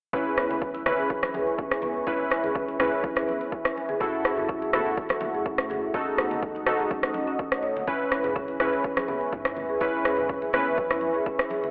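A hypnotic, spiritual afro house excerpt opens at once with a punchy kick, hard-hand congas in the background, a round sine sub bass and woody marimba arpeggios under a filter sweep, an up-front deep house kit of rim clicks and toms joins a moment later, while detuned sawtooth keys stab through chorus, delay and 12-bit grit, a moody, slow-attack pad settles beneath at 1.3 seconds, sidechain pumping breathes through the melodic parts, and the whole dry, lightly reverberant mix carries a gritty, telephone-like colour over a C#m7, F#m7, D#dim progression.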